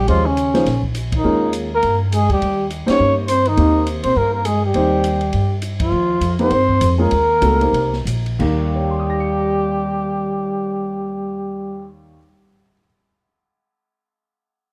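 Swung eighths in 4/4 at 175-206 BPM drive this spiritual, searching modal jazz excerpt in Eb mixolydian, moving from Eb9sus4 to Cm7 with several full-band accents. A breathy, whispered trumpet with vibrato and scooped notes carries the melody up front over a distant, roomy trombone second line, while a woody, thumpy pizzicato upright bass on gut strings, a natural-sounding baby grand piano and a dark, smooth drum kit with a boomy kick fill out the sound in light reverb. The band slows down from 5.9 s to 8.4 s, and the music settles on Eb at 8.4 s, just before the drums drop out at 8.5 s.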